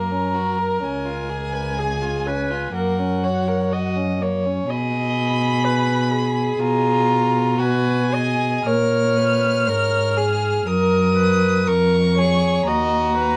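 In a dark, softly reverberant studio sound, this serene, lyrical excerpt from a slow romantic movement for string quartet unfolds with gentle rubato, as a distant, woody first violin with vibrato sings the melody over a pure, floating second violin played sul tasto, a rich viola accompaniment with soft attack, and an intimate cello bass with light vibrato and an airy bow sitting close and up front.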